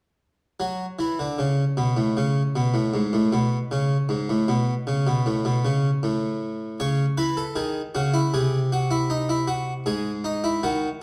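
A close-miked Flemish-style harpsichord carries this baroque-style three-part fugue, its plucked, brilliant tone filled out by octave strings and placed up front. The mood is driving and solemn, moving at 78 BPM in a straight 4/4, with the instrument playing solo from 0.6 to 10.9 s across a range from G#2 to C#5. The harpsichord itself sounds dry and full, while the recital hall around it adds a reverberant wash with a 1.3-second decay, and the overall production leans dark. The harmony settles on C# minor at 6.8 s, then moves through G#/B# to a G#7 chord with its third omitted at 9.9 s. This short section is cut from a longer piece.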